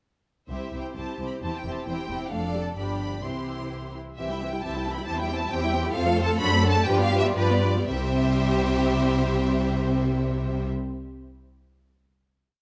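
Graceful and cheerful, this short, complete movement for string orchestra has a quick classical-period lilt in two, shaped with a flexible rubato. The first violins carry the melody with a lush, expressive vibrato and soft attack. Beneath them, the clear, focused second violins and the dark, intimate violas fill in with repeated notes, chords in the rhythm of the tune, a rocking two-note figure and sustained chords. The warm cellos combine repeated and sustained bass notes with a smooth-topped counter-melody, while the double basses sit up front, even and full, doubling the bass line on the beats. The phrase is stated twice, the second time slowing from 5.5 seconds, and the movement settles on a final C major chord at 7.9 seconds, heard through close, detailed microphones in a moderate scoring-stage reverb.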